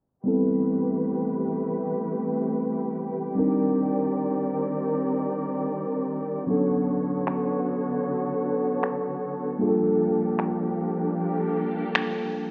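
Contemporary R&B with a late-night, moody feel, moving at an unhurried pace with a light swing. A mellow tine electric piano carries the accompaniment from the start, its clean tone heard as if through built-in speakers, while a lush bowed string section holds sustained chords alongside it with soft attack and expressive vibrato. The harmony drifts through a chain of minor ninth chords, beginning on Am9 and landing on Gm9 near 9.6 seconds. Gritty, compressed electronic finger snaps join at 7.3 seconds, sitting up front in the mix. A filter sweep runs across the whole passage, and the rough home-demo mix is dulled by a low-pass filter and a light small-room reverb. This short section is cut from a longer piece.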